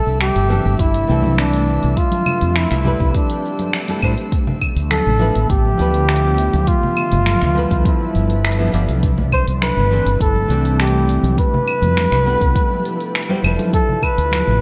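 Sunset chillout with a relaxed, warm mood, this excerpt from a longer piece moves in a straight 4/4 over lush jazz-tinged chords such as Fmaj9#11 and G13. A breathy, mellow flugelhorn carries the melody up front, close-miked with vibrato in a jazz style, its tone trailed by tape echo and slapback echo. Beneath it, an ethereal, airy pad holds sustained chords in the background with slow attacks, long releases, ensemble chorus and its own reverb. A very quiet, glassy texture of drifting overtones hovers only until 4.3 seconds. The round, dark fretless electric bass sits punchy and up front with tube saturation and chorus, joined by a layered deep house kit of cabasa, claves, finger snaps and hi-hat, a deep electronic kick from 0.8 seconds, and distant congas in the background. A full-bodied, fingerpicked nylon-string guitar adds accompaniment with audible finger squeak and digital delay, all set in a concert hall reverb that gives the mix a big arena sound.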